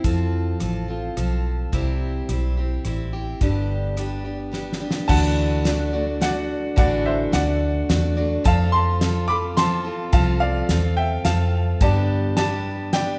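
A church or concert hall lends moderate reverb to this heartfelt, easygoing fragment of honky-tonk and classic country, moving in a relaxed 3/4 at 107 BPM. Up front, a warm, picked dreadnought acoustic guitar carries the accompaniment, while a dry drum kit with dark cymbals, fat snare and tight kick and a round, punchy, foam-muted electric bass together anchor the F, C and G changes, capped by a drum fill at 4.5 seconds. From 5.1 seconds a brilliant, woody upright piano with short sustain takes the melody over Dadd9, F and G.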